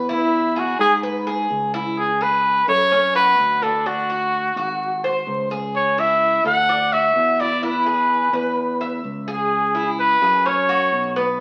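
A clear, up-front trumpet leads this sunny, danceable Cuban son and guajira at 127 BPM, singing in a pop style with vibrato and scooped notes and taking a solo over the opening 2.0 s before the next section begins. Beneath it, a metallic, double-strung acoustic Cuban tres picks arpeggios while a bright, growly fingered electric bass carries the low end over chords moving through E, C#m and D. The sound is that of a very old 78 rpm record, with vinyl crackle and a wet studio reverb.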